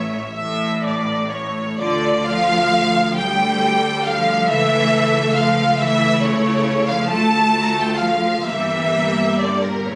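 Captured on a phone in the room with a light reverb, this melancholic, solemn passage from a slow romantic movement for string orchestra in D minor drifts in rubato 6/8 at 40-46 BPM, with an up-front, vibrato-rich first violin section carrying the melody over a warm, smooth-topped second violin line, close and focused violas, distant, lush cellos and a bowed double bass section anchoring the low end, as the harmony moves from A to D minor at 1.8 seconds and on to G minor at 8.5 seconds.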